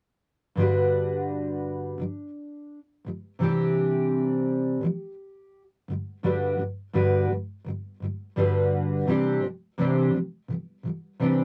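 With the snug booth ambience and soft grain of a home cassette recording, this sunny, easy-going pop excerpt at 85 BPM in G major features a full-bodied, double-tracked fingerpicked steel-string acoustic guitar placed up front, moving between Gmaj7 and Cadd9 chords from 0.6 to 11.4 seconds.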